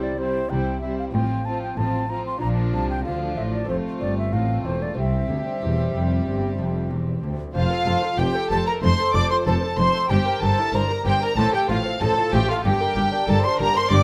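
Lively and brilliant, this 14-second excerpt from a baroque-style concerto movement moves at 94 BPM in a straight 4/4, set in F major. A bright, airy wooden baroque flute carries the melody with an expressive vibrato and a soft attack, sitting close and detailed, while a rich violin section with a smooth top also plays the melody on gut strings. A second violin section, described as warm and close, adds a second line, and a dark, nasal viola section fills in the accompaniment from the background. Plucked beneath them, a delicate fingerpicked lute with double gut strings, some doubled at the octave, adds accompaniment, and a cello section and double bass section, both rich and reedy, anchor the bass in period style. The harmony opens on C, passes through F/A, Bb and F, then shifts into a second section at 7.5 s that moves from F through C7/G and F/A to Gm, all under a light reverb.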